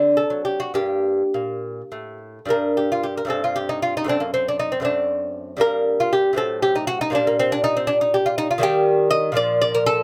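Flowing and introspective, this short passage from a longer baroque-style dance in G minor moves in a rubato 6/8 at about 67-82 BPM, counted in dotted quarters. A solo lute carries it all, fingerpicked with a delicate touch on doubled nylon strings, some of them octave-doubled. The instrument sits up front in a dry, close and detailed recording, opening on D7 and shifting into a second section at 2.5 seconds that passes through Adim7 and Eb before settling on Bb5.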